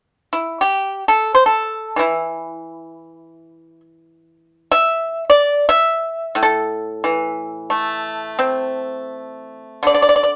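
Elegant and contemplative, this short excerpt of Chinese traditional solo plucked-string music unfolds in free time in the A yu mode, tuned to A4 = 439 Hz. A lone pipa, played with fingerpicks, enters at 0.3 seconds and carries the whole passage, ranging from A2 to E5 with a bright, percussive, dry tone that sits up front. A light reverb surrounds it, and the fragment is clearly cut from a longer piece.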